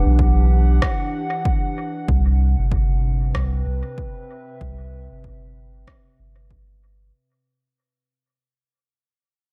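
Meditative and deep, this short ambient dub fragment moves at 95 BPM in 4/4 with a swung sixteenth feel, cut from a longer piece and fading out across its whole 7.1 seconds. A warbling, lo-fi, detuned pad with chorus and its own reverb holds dark, nostalgic chords from Em9 to Cmaj7 at 2.1 seconds, while a round, sine-like sub bass sits up front beneath it. A punchy, layered, overdriven electronic kick enters at 0.2 seconds and an overdriven rim click with dub echo joins at 0.8 seconds, all set in a digital ambience.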